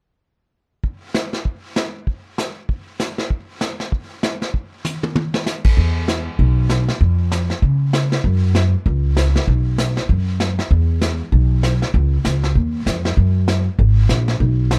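A swung 4/4 groove in eighth notes drives this cheerful, playful western swing country fragment, cut from a longer piece. A vintage brush drum kit sets it going at 0.8 seconds, its dark, smooth tone coming from brushed snare, hi-hat, kick, toms and a crash with dusky cymbals and a rolled-off top. The medium-tuned snare and punchy kick sit up front in a dry studio room, and the kit plays alone through the opening section until a drum fill at 4.8 seconds. At 5.8 seconds a pizzicato upright bass joins for the second section, its woody steel-string voice also up front and louder than the drums. The bass works in its low register with a warm, acoustic presence under the kit's steady swing.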